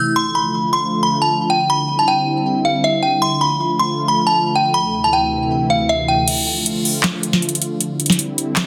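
Hip hop trap excerpt in D dorian at 157 BPM with a half-time feel, hard-hitting and brooding, where a delicate, tinkling FM tine bell with chorus and digital delay plays the melody over a smooth, warbling, detuned sawtooth pad holding sustained chords from Dm through Cadd9/D and Am/D, until at 6.3 seconds the bell stops and a booming analog drum machine enters with tonal snare, handclaps, metallic hi-hats and a crash, the kick muted, all set in a plate reverb within a dense, heavily limited modern master.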